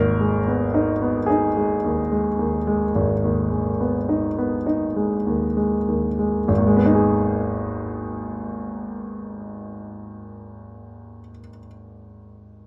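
In a 12/8 metre with free, breathing rubato, this wistful, yearning romantic nocturne for solo piano holds back noticeably over its first 6.5 seconds before moving into a new passage. The grand piano sounds clear and intimate, close and up front, its low bass and middle register captured in natural detail that lets the clicks of the action come through. A light reverb adds a touch of space to this fragment cut from a longer piece, which ends at 12.7 seconds.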